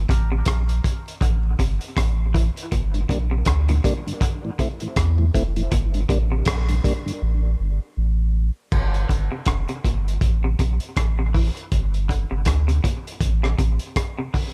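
A round, deep sub bass opens this spacious dub reggae excerpt at 80 BPM in G dorian, joined at once by a crunchy, gritty breakbeat kit with a punchy kick, rim clicks and dark cymbals, twangy picked arpeggios from a bright clean electric guitar soaked in dub echo, and a mellow tonewheel organ with key click, slow rotary speaker and echo that drops out at 7.1 s, after which the drums fall silent from 7.2 to 8.7 s before returning over a swung, echo-heavy mix that moves between Gm, Am, Gsus2 and G5.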